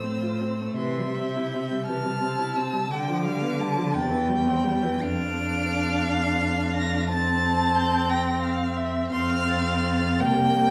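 Classical slow romantic movement for string quartet in F major, 6/8 at 57 BPM with uneven, rubato beats and a lyrical, tender mood: of two dark-toned violins, the first sings a high, expressive melody with vibrato and portamento, the second carrying a soft-attacked, up-front line with gliding portamento, while a clear, distant viola supplies smooth, even accompaniment and a rich cello holds the bass, each part bowed by a single player across this 10.7-second fragment heard from further back in a reverberant recital hall.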